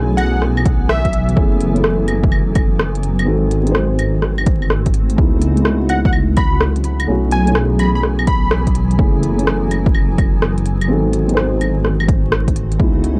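A swung 16th-note groove at 126 BPM in 4/4 drives this nocturnal, rainy slice of future garage, cut from a longer piece and steeped in vinyl crackle and dry, gritty hardware sound. An overdriven, punchy electronic kick sits up front from 0.7 s, while an organic electronic kit of claves, crisp hi-hat and rim click carries tape-toned, small-room character and vintage 12-bit sampler grit. Underneath, a deep, rumbling detuned saw bass beats with saturation, pumping against the kick alongside a felt-muted upright piano whose soft, boxy voicings trail through analog delay. A cloudy, evolving granular pad blurs the harmony with its own reverb as the chords move from B9sus4 through F#m9, G#7b9 and C#m9. A catchy, plucky unison lead with a noise layer and filter sweep surfaces briefly near the start and again from 5.9 to 8.8 s, its mellow high notes echoing through delay.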